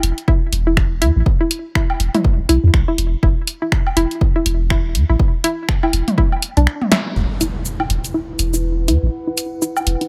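A dry, up-front mix carries this clinical, sparse minimal techno cut from a longer piece at 122 BPM with a swung 16th-note feel, where a deep sine sub bass with a pitch-drop attack pumps beneath a hollow, bouncy square-wave pluck riff coloured by chorus and tape echo, a punchy analog drum machine supplies finger snaps, hi-hat, shaker and snare beside an electronic kick that stops at 6.3 seconds, and overdriven electronic woodblock and toms echo in a larger room; after a drum fill and band accent at 6.9 seconds, an electronic impact lands at 7.2 seconds as a filter sweep moves across the synth arpeggio and a warbling, nostalgic lo-fi pad drifts in.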